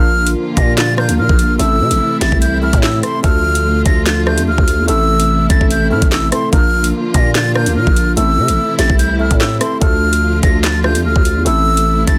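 Drill hip hop at 146 BPM in a half-time feel, cold and tense in A phrygian, where a breathy concert flute carries the high melody through tape echo over a worn, slightly out-of-tune tine electric piano, lush bowed strings with vibrato holding sustained chords, and a growling, buzzy 808-style bass up front, while a drill drum kit with a knocking kick, sharp snare, metallic hats, handclaps and rim clicks enters at 0.3 seconds, all wrapped in a dense, heavily limited modern master with vinyl crackle.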